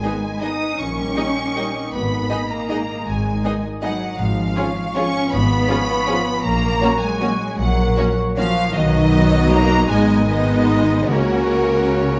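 Festive and sweeping, this classical orchestral excerpt moves in a rubato 3/4 at 157 BPM, settling into F# major from 4.2 s: a lush, focused first violin section carries the melody over a smooth second violin line, intense violas in the background, an even cello bass joined at 0.8 s by distant double basses, mellow French horns holding sustained chords, and a concert harp's ringing arpeggios, all set in a moderate recital hall reverb with a dark, warm production.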